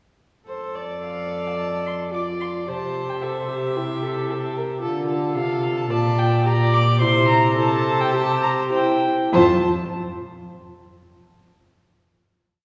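Spirited and lively, this brief, complete classical-period movement for string quartet in F major moves at 97-114 BPM in 4/4 with a rubato feel, as a dark, distant first violin carries the melody from 1.0 s over a nasal second violin's independent inner lines, a warm viola's sustained chords and a rich, up-front cello's sustained bass with passing notes and light vibrato, all in reedy gut-string period tone, slowing from 3.8 s through a progression from F to C, Dm and Gm7/Bb before settling on a final F5 chord at 9.3 s, heard from further back in a wet concert hall.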